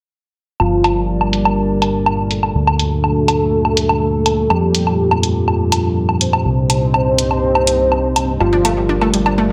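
Melodic techno at 123 BPM in G minor, this hypnotic, driving excerpt moves through Gm, D, Fadd9 and Cm under a fat, detuned sawtooth bass, a dark, moody pad of slow-attack sustained chords, and up-front electronic woodblock and hi-hat re-recorded in a large room and low-pass filtered, while a mellow, wave-folded analog lead carries the melody through a filter sweep with chorus and dub echo, an evolving, warbling vintage drone enters in the background at 2.1 seconds, and a round, bright pluck adds chorused, delayed arpeggios from 8.4 seconds, all set in a lush hall reverb.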